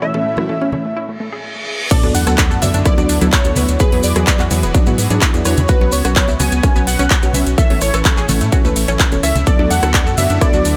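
This expansive, hopeful progressive house excerpt opens under a filter sweep, with a catchy, detuned sawtooth lead carrying the melody through analog chorus and delay. Beneath it sit a lush supersaw pad, a tight, driving arpeggiated synth with phaser, and full-bodied, wave-folded stabs with a cassette-tape grain, each pumping to the sidechain. Bright bongos and congas and a metallic-hatted dance kit with claps, rim clicks and crash slip in almost at once, and a short break brings a reverse cymbal and sub drop from 1.2 seconds. At 1.9 seconds the drop lands with an impact, a punchy, up-front electronic kick and grainy, saturated maracas, with a round, deep analog bass following a moment later. Over chords moving from A through D6, Eadd9 and Bsus2 and back, the track rides forward in a straight, steady pulse bathed in digital ambience.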